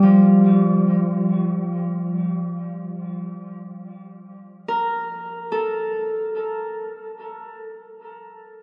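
Melancholic yet serene, this ambient excerpt drifts in free time, carried by a solo Celtic harp that is fingerpicked and ringing, set up front and spanning F3 to D6. It opens on a Dmadd11/F chord, then from 2.6 seconds moves into a chordless passage until the harp stops at 8.2 seconds. A diffuse ambient delay trails the harp, and a cathedral reverb with a 5.5-second decay places it in a vast, echoing space.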